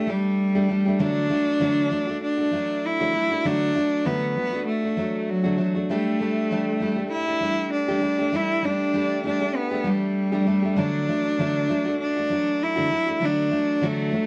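A clear, smooth bowed cello carries the melody with vibrato over a bright, full-bodied picked steel-string acoustic guitar with audible finger squeak, both up front, in this sunny, carefree pop excerpt at 98 BPM in D major with a lightly swung 16th-note feel, moving between Gsus2 and D, set in a moderate studio reverb and coloured by worn cassette tape with warbly pitch drift.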